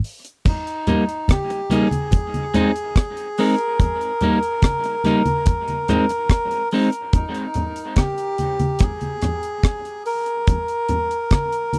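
Dub reggae at a laid-back, hazy 72 BPM in Eb major, cut from a longer piece, with a deep, dry drum kit of tight kick, hi-hat, rim click and crash opening alone before a reedy, breathy melodica carries the melody in dub echo between Eb4 and Bb4, entering together with thin-skinned, saturated congas. A bright, twangy electric guitar at the edge of break-up adds echoed accompaniment over the alternating Eb and Ab chords until 6.9 seconds, after which the harmony drops out into a break from 7.1 seconds. The close, dry 1970s-style studio sound carries light reverb.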